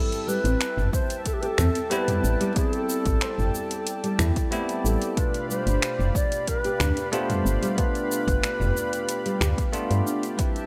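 A straight 4/4 pulse comes from an overdriven electronic kick that sits up front from 0.9 s and a deep house kit of finger snaps, metallic hi-hats, shaker and toms, both re-recorded in a large room, while a woody, round FM bass with a fast, decaying attack pumps against the sidechain. Over a mystical, earthy organic downtempo bed moving from Am7 to G7, a bell-like tine electric piano with digital delay and a smooth, detuned sawtooth analog pad with chorus both breathe with sidechain pumping, and a dark, thumb-plucked nylon-string guitar arpeggiates in the background. Leading the excerpt is an airy, hollow Native American-style cedar flute with vibrato, a crisp chiff and digital delay, framed by light reverb and digital ambience.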